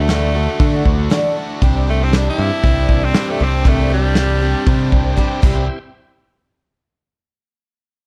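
A raspy, gritty tenor saxophone leads this short folk rock and heartland rock excerpt, playing a forceful pop-style solo with light vibrato from the start to 5.7 seconds. Underneath, a twelve-string acoustic guitar adds a shimmering, octave-doubled picked accompaniment in the background, while a double-tracked overdriven electric guitar plays a riff. An up-front, direct electric bass and a soft brush drum kit with a punchy kick anchor the straight 4/4 feel at 118 BPM, with a drum fill from 5.2 to 5.7 seconds. A very quiet tonewheel organ holds sustained chords through a slow rotary speaker, its key click and light overdrive tucked far beneath the band. In C major, the harmony moves from Dadd9 to Csus2 and settles on C, and a small room reverb gives the dark, warm production a nostalgic glow.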